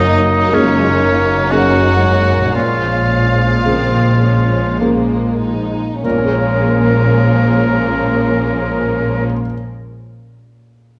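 Worn, warbling old cassette tape gives this recording a drifting, unsteady pitch, set in the moderate reverb of a scoring stage. It is a cinematic, emotional film score for orchestra in a rubato 3/4, full of longing and a bittersweet ache, and it slows down over its first 6.0 seconds as the harmony moves from Gbadd9 to Bbm7 at 2.5 seconds. A violin section carries the melody with smooth, even vibrato, while a clear oboe sits up front in classical style on a second line, joined by a second, more expressive violin section. Beneath them, a viola section with a soft attack and a cello section fill out the background, and a lush, bowed double bass section anchors the low end. A felt-muted upright piano adds a very quiet, intimate accompaniment with short sustain and audible action noise, and it carries on alone after the strings and oboe stop at about 9.3 seconds, ringing until 11.0 seconds.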